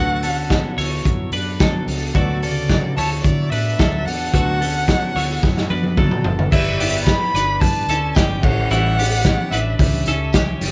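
The drum kit sits up front in this bittersweet, restless slice of jangly indie pop, its muffled, rolled-off sound with dark cymbals and a tight kick giving the groove a lo-fi feel at a straight 110 BPM in 4/4. A bowed violin carries the melody, nasal and boxy in tone, with vibrato and portamento adding an expressive, singing quality. A bright, twangy twelve-string electric guitar spins clean arpeggios over a round, foam-muted electric bass, while a full-bodied picked steel-string acoustic guitar and a woody upright piano with long sustain fill in the background. The band sounds like it is playing live together in a small room with moderate ambience. The opening section rests on D6, and a drum fill from 5.4 to 6.5 seconds leads into a new section, where a jingly tambourine joins very quietly and the harmony moves to G6 and then A7.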